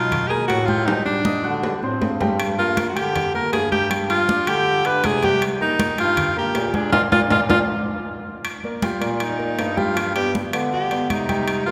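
An up-front alto saxophone leads this sophisticated, danceable Afro-Cuban jazz excerpt, its breathy subtone and vibrato carrying the melody at a straight 158 BPM in 4/4. A concert grand piano accompanies with an intimate, natural sound, deep in the bass and long in sustain, with its action noise audible. A bass clarinet, clear and vintage in character with its own vibrato, holds the low line. Ringing congas, close and dry, and metal-shelled timbales in a live room drive the groove, with drum fills around 0.9 s and 7.9 s and a band accent from 6.9 s to 8.4 s. The saxophone then takes a solo from 8.4 s as the harmony moves from Ebmaj9 to G, everything bathed in a lush church reverb.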